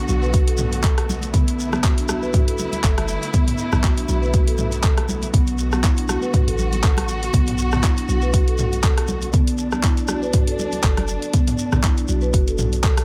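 This afro house excerpt opens with a dark, lush string section bowing sustained chords with expressive vibrato, while a marimba played with soft mallets spins woody, round arpeggios through a dub echo, and a boomy 808-style bass with a sine body and a fast attack sits underneath, all three pumping with the sidechain. Bright congas struck with hard hands enter at 0.1 seconds in the background, along with a grainy shekere heard close and dry. At 0.3 seconds a layered deep house kit of handclaps, hi-hat, rim click and toms arrives with a tape-warm electronic kick drum placed up front. The groove moves at 120 BPM in 4/4 with a light 55% swing on the sixteenths, resting on a single Bm7 chord in B minor pentatonic. A small room ambience frames the whole, giving the piece a spiritual, warm mood.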